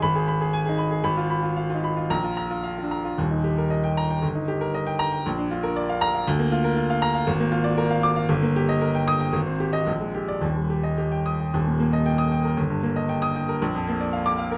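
A clear, open baby grand piano plays alone and up front, its long sustain ringing across a range from Eb1 to Eb6 in this sparkling, heroic virtuoso study. Set in Eb major and 2/4 at roughly 107-120 BPM with a rubato feel, the passage opens on a darker Abm colour before arriving at Eb around 3.2 seconds and moving through Bb, Abmaj7 and Bb6 harmonies. Close, detailed microphones and a light reverb frame this short cut from a longer classical piece, tuned to A4 = 442 Hz.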